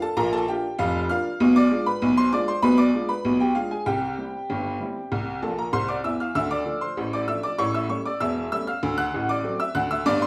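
A roomy studio sound with moderate reverb surrounds a single upright piano, heard up front with a woody, boxy, slightly detuned tone and long sustain. This short, cheerful and lively ragtime passage in 2/4 has a straight feel and moves from Bb through a diminished chord to C, then on to Dm, A7 and D7. The piano plays a fill from 5.4 to 6.4 seconds.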